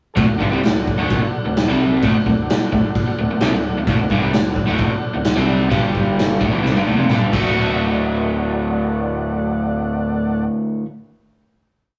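A crunchy, double-tracked overdriven guitar leads this rowdy, raw garage rock piece with an up-front power-chord riff, while a growling picked electric bass, overdriven and tube-saturated, doubles the riff in driving eighth notes. A punchy raw garage drum kit stomps along up front with a medium-tuned snare and a rolled-off top, rolls into a fill at 6.6 seconds and drops out after 7.4 seconds, as a reedy combo organ holds heavy-vibrato triads and a jingly tambourine sits in the background. The band lands a final hit at 7.6 seconds that rings out to the end, all captured with the rough, saturated feel of a rehearsal room and a touch of light reverb.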